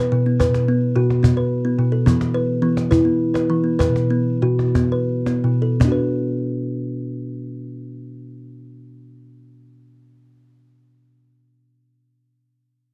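Meditative and gentle, this short world-music fragment, cut from a longer piece, moves in an unhurried 6/8 at 54-72 BPM counted in dotted quarters, with a straight feel in B minor pentatonic tuned to A4 = 439 Hz. A thumb-plucked kalimba carries the piece with up-front arpeggios between B2 and B4, its short, woody notes sounding dark and smooth from a solid board. An acoustic cajon with snares sits up front beside it, snappy and roomy, until it stops at 6.2 seconds and leaves the kalimba alone. The tempo slows from 2.1 to 5.8 seconds as the harmony moves from B5 to E5 and back to B5, then settles on B minor as a second section begins. A moderate booth ambience and the soft grain of cassette tape give the whole a close, intimate sound.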